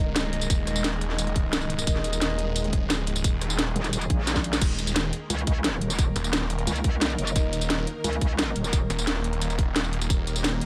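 A snarling, distorted saw bass growls up front from the first moment, under a swarming drone of sustained chords, a warbly lo-fi pad and distant stabs from a dark brass ensemble with light vibrato. This is an excerpt of dark, aggressive technical drum and bass. The drum kit and a tight, tape-warm electronic kick arrive almost at once, with a cracking snare, metallic hats, rim clicks, tambourine and crash cymbal pushed forward. The drone and pad pump under sidechain compression, the brass stabs trail delay, and the saw bass gains grit from tube saturation. A bright FM wobble bass with chorus joins the low end at 3.8 seconds, and after a short drum fill the nostalgic pad drops out at 4.6 seconds as the drop begins again in a dry, close mix.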